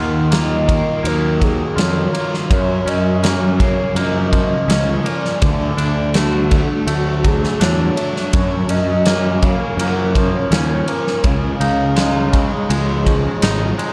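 Wistful and dreamy, this short shoegaze and dream pop excerpt drifts at 82 BPM in F# major, moving through chords such as D#madd9, F#maj7, D and C#add9. A velvety, detuned synth lead carries the melody with chorus, vibrato and slapback echo over a very quiet, warbling lo-fi pad with phaser. An overdriven semi-hollow guitar with lush chorus sits in the background beside a twangy, clean, fingered guitar washed in reverse reverb, while a round, punchy fuzz bass and an airy, polished arena drum kit entering at 0.3 s stand up front in a dark, small-room mix.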